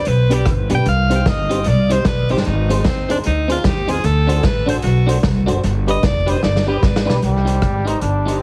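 An edgy, punchy alto saxophone carries the melody through this energetic, driving ska excerpt at 151 BPM in C harmonic minor, soloing from the start with light vibrato and a dub echo trailing its phrases. Underneath, a slightly broken-up electric guitar picks out a compressed, chorused accompaniment, while a very quiet tonewheel organ adds lightly overdriven stabs with key click and a slow rotary shimmer. The woody, thumpy pizzicato upright bass on gut strings sits up front beside a vintage drum kit with a punchy kick, medium-tuned snare, rim click and hi-hat in a small, pumping room, the kit also caught in dub echo. The swung groove moves from G through Cm, Ab and D7, and a drum fill from 6.4 s leads into a new section at 7.2 s, where a brilliant, distant trombone takes over the tune with its own dub echo. The mix has a heavily compressed radio sound with vinyl crackle and very little reverb, giving it a dry, old-record feel.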